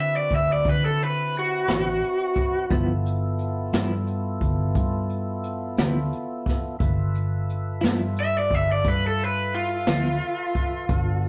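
A swaggering, gritty slow blues in 12/8 at 58 BPM, this excerpt features a bright, overdriven raw garage guitar solo up front over D13 and G13 chords, with a fat tonewheel organ holding sustained chords through a slow rotary speaker, a round, punchy, foam-muted vintage bass, a dark brushed jazz kit with a boomy kick entering at 0.3 seconds, and a compressed, clean electric guitar with tremolo joining at 1.7 seconds, all captured in a rough rehearsal-room sound with light reverb and saturation.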